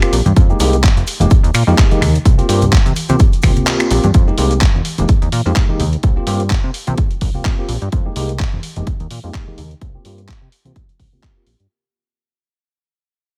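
A punchy, tape-warm electronic kick sits up front in this sensual, funky filtered disco house clip, dropping out at 3.7 seconds under a band accent before returning. Alongside it, a plucky sawtooth-and-square analog bass with a fast, decaying filter pluck pumps up front, while a gritty sampler-style kit of finger snaps, handclaps and hi-hat, bright maracas and hard-hand congas in the background, and a clean tine electric piano with phaser, heard through built-in speakers, fill out the swung Fm11 to C7sus4 groove. From 4.1 seconds a filter sweep runs as the clip fades out.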